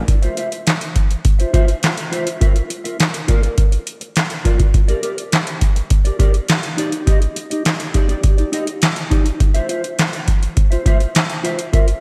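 A lush hall reverb with digital ambience gives this short cut from a longer piece a big arena sound. It is early-eighties boogie funk at 103 BPM in a straight 4/4, danceable and slick from the first beat. A booming analog drum machine sits up front and carries the groove from 0.1 to 12.0 seconds. Its deep kick, tonal snare, handclaps and metallic hi-hat have a tape-warm character, with a short room on the snare, claps and hats. Beneath it, a mellow electric guitar plays a riff between Eb4 and E5, fingered, clean and dark, treated with analog chorus and slapback echo and set lower in the mix than the drums. The harmony moves from Cadd11/F through Bb/F, Bb6 and Ebmaj7 before returning to Cadd11/F at 9.4 seconds.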